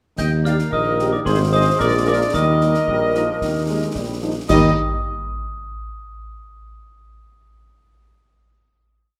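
A brief, festive and rousing wind-band march in Eb major at 111 BPM opens at 0.2 seconds with most of the band together: a warm trumpet section carries the melody with light vibrato and a soft attack, woodwinds double the tune in thirds and unison, and a ringing, bell-like glockenspiel played with soft plastic mallets doubles it at the octave. Underneath, an up-front, mellow tuba plays the bass on the beats, clear, vintage-tinged trombones hold sustained chords in the background and answer at phrase ends, and a smooth French horn section joins at 0.5 seconds with tight after-beat chords. A close, dry snare drum marches over the bass drum and dark clash cymbals, the short Eb–Ab–Bb7–Eb progression lands on a final chord at 4.5 seconds, and the band sits in a wet, large studio reverb.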